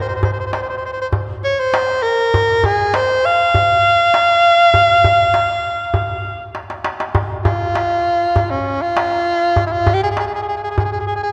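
A dark production soaked in a wet concert-hall reverb frames this soulful, melancholic fragment of an Arabic maqam ensemble piece in F minor, moving at 100 BPM in a straight 4/4 and tuned to A4 = 435 Hz. Up front, a breathy, whispered soprano saxophone carries the melody as an intimate jazz-style solo, with soft attacks, scooped notes and light vibrato spanning Db4 to F5, while a deep, metal-shell darbuka played with hard hands sits further back. The darbuka's fill from 6.6 to 7.2 seconds leads into a new section, and the saxophone carries on to the cut at 11.3 seconds.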